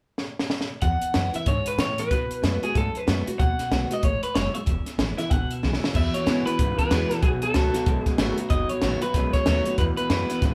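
A twangy, slightly broken-up electric guitar through a small old amp carries the lead melody up front in this rollicking, retro rockabilly excerpt at 188 BPM with a swung feel in E major, joined by a second electric guitar playing a low riff, a boxy picked archtop in the background and a woody, thumpy pizzicato upright bass. A compact cocktail drum kit with a high-tuned snare, tight kick and dark, rolled-off top opens with a fill at 0.2 seconds before the band comes in at 0.8 seconds, and another fill at 5.6 seconds leads into a new section. The changes move between E and B7, and the band sounds like it is playing live in one room with light reverb.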